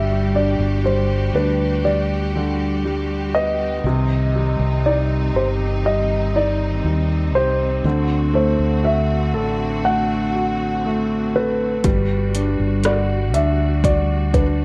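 A dark, mellow grand piano carries the melody over a woody, intimate upright piano, lush bowed strings with vibrato and a direct, up-front fingered bass in this tender, heartfelt pop ballad cut from a longer piece, moving through Gmaj7, Cmadd9 and D7 before a layered, overdriven deep house kit of deep kick, metallic hats and rim clicks enters at 11.8 seconds, the whole mix colored by studio reverb and the warbling pitch drift of worn old cassette tape.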